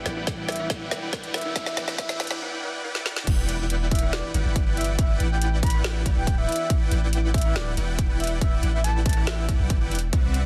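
Future bass at 140 BPM in a half-time feel, this dreamy, lush passage in E minor opens on an Em9 colour, with a very quiet bowed string section holding sustained chords until 2.4 s while a drum fill and a faint riser carry the build-up. At 3.3 s the drop lands with an impact, and a huge, detuned supersaw riff, present from the very start, takes the foreground, thick and compressed, roughened by vintage 12-bit sampler grit, pumping under sidechain and shaded by a low-pass filter. Beneath it, a deep, mellow 808-style bass sustains long sine tones up front, also pumping, while a punchy, layered electronic kick drives the half-time pulse. The trap kit adds metallic hats, crash cymbal and a woody snare with soft clipping, all carrying a tape-like character. Floating above, a breathy, flute-like synth lead sings a soft melody between D5 and B5, dressed in chorus, delay and vibrato, all inside a light reverb and a dense, heavily limited modern master.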